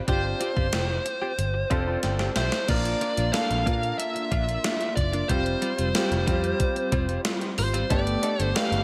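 Romantic and uplifting, this short cut from a longer 1980s-style pop piece moves in a straight four. A gated digital drum machine sits up front with a thumpy kick and a gated-reverb snare, its tape-tinged, sampler-style sound re-recorded in a small room, while a dark, round, foam-muted picked bass anchors the low end. A clear, polished baby grand piano carries the accompaniment and plays a fill alongside a drum fill just before the change at 2.7 seconds, where a brassy, bold sawtooth pad with detuned chorus, vibrato and a soft attack enters in the background with sustained chords. Over this, a bluesy overdriven lead guitar with distortion sings the melody up front, and a clean, compressed electric guitar recorded direct picks a chorused riff further back. A very quiet, metallic cowbell appears near the close at 7.9 seconds, and light reverb gives the whole a gentle sense of space.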